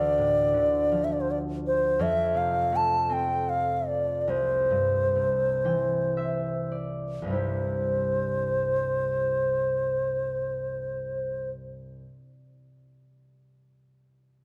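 This tender, pastoral Celtic slow air in three moves in free rubato, with a bamboo bass bansuri carrying the melody up front in an airy, reedy voice, shaped by vibrato and tongued notes, over a ringing, fingerpicked concert harp that is also up front. Over a Dm, F and C progression the pace slows from 2.0 seconds, the harp weaves in a fill from 5.2 seconds, and a brief second section follows. A moderate recital hall reverb gives the pair a natural sense of space, and the bansuri drops away at 11.5 seconds as the harp rings on for a moment.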